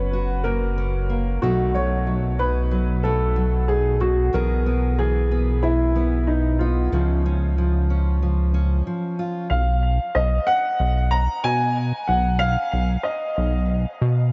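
Anthemic and nostalgic, this indie folk passage with a building arrangement sets a woody, up-front upright piano melody touched with subtle chorus and tape echo over full-bodied fingerpicked steel-string acoustic guitar and a dark, glossy, saturated synth bass with retro pulse-width and sawtooth tones; after a brief break at 8.9 seconds the guitar stops at 9.5 seconds, while the piano carries on until 13.6 seconds and the bass holds to the end, all within a light, small-room ambience.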